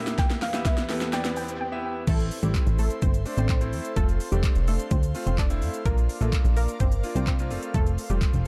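Bittersweet yet confident, this dance-pop excerpt opens with a build-up where a soft, round pluck carries the melody over a bright concert grand piano, an airy, breathy pad with chorus, a very quiet riser, and a drum fill on an overdriven pop kit with a knocking kick and fat snare, plus a barely audible group handclap. After a brief break, the drop lands at 2.1 seconds as a lush, detuned unison pluck takes over the melody and a punchy, funky analog bass joins, with the piano, pad and bass all pumping against the up-front drums. The production is dark and dry, with little reverb.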